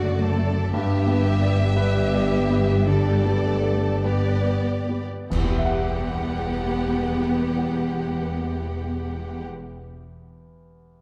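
Cinematic, emotional film score for orchestra, a brief rubato passage in a longing, bittersweet mood that is cut from a longer piece and slows down through its opening 5.3 seconds. A lush violin section carries the melody with vibrato and a soft, expressive attack, while a second violin line sits smoothly beneath it. In the background, violas with touches of portamento, a mellow piano with deep bass, and a tight French horn section holding sustained chords fill out the harmony. A very quiet fingerpicked harp adds ringing arpeggios. Cellos and a woody double bass section anchor the low end. At 5.3 seconds the chords settle onto Emadd9 and the full band accents the moment as clash cymbals and concert bass drum enter with a bright splash, and a moderate scoring-stage reverb gives the whole a dark, warm glow.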